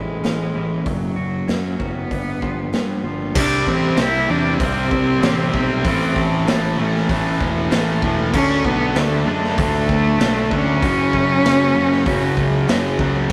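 An intense bowed cello with vibrato sings up front through analog delay over a twangy, clean twelve-string electric guitar arpeggio and a fuzzy overdriven bass, with a punchy, gritty garage drum kit in a pumping stone room joining at 0.2 seconds, until at 3.4 seconds the twelve-string drops out and three bright guitars (a cranked overdriven stack, a very quiet double-tracked fuzz part and a tight distorted one in the background) crash in with a riff, turning this anthemic, restless fragment of quiet-loud alternative rock into a rough, tube-saturated rehearsal-room roar.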